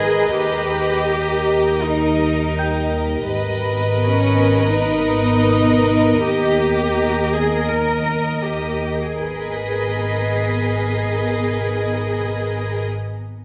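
Cinematic music in G# harmonic minor at 82 BPM in a straight 4/4, mysterious and eerie in mood, cut from a longer piece. Violin sections carry the melody around D#5 and a second line beneath it, played sul tasto with light vibrato and a soft attack, while a cello section sits up front with an intimate bowed tone and a dark double bass section anchors the low end. A granular cloud pad holds sustained chords throughout, its detuned, blurred sine texture evolving inside its own built-in reverb. A worn, slightly out-of-tune celesta adds bell-like, delicate figures in the background until 9.2 s, when a high, soft violin texture takes over until 11.7 s. The harmony moves between D# and G#madd9, and the whole ensemble sits in a wet scoring-stage reverb that deepens the sense of unease.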